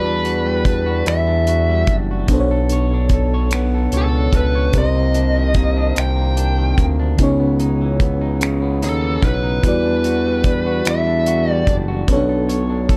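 Yearning and late-night in mood, this slow R&B cut in six-eight moves with a straight, unhurried sway through lush minor-ninth chords. Up front, a dark, overdriven lead guitar carries the picked melody until it drops out at 11.8 seconds. A second electric guitar, twangy and slightly broken-up, adds a fingered line beneath it. Further back, an FM electric piano layered with a soft pad sits dreamy and mellow, its detuned tone shimmering with chorus and tremolo. A smooth synth bass holds the low end with a sustained, sawtooth-edged tone. A dry, airy 70s drum kit of finger snaps, hi-hat and tight kick comes in at 0.2 seconds, and a small room ambience surrounds the parts.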